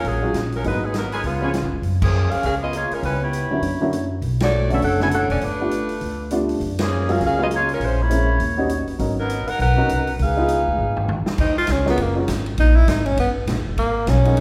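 Brassy and dramatic, this up-tempo big band swing excerpt opens with a smooth-topped saxophone section carrying the melody over woody pizzicato upright bass, a punchy big-room drum kit and a dark, mellow baby grand piano with audible action noise, a soft-attack vintage trumpet section adds a brief stab near 1.1 seconds, band accents punctuate the passage, and after a drum fill a breathy tenor saxophone with scooped notes takes a solo from 11.4 seconds, all bathed in a wet recital-hall reverb.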